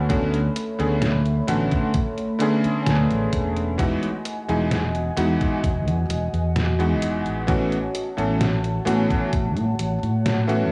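Light digital reverb wraps this dreamy, faded vaporwave fragment, cut from a longer piece and moving at a slow 65 BPM in E major as the chords shift from Bm9 to Emaj9 to A6. A bright, clangy electric grand piano with lush chorus, 12-bit sampler grit and analog delay carries the accompaniment up front beside a punchy fretless bass roughened by tube saturation, while a warbling, nostalgic tape-like pad holds mellow, detuned chords beneath them. From 0.1 s, a detuned 8-bit drum machine ticks out hi-hat and snare alongside a thumpy electronic kick that drops out at 9.5 s.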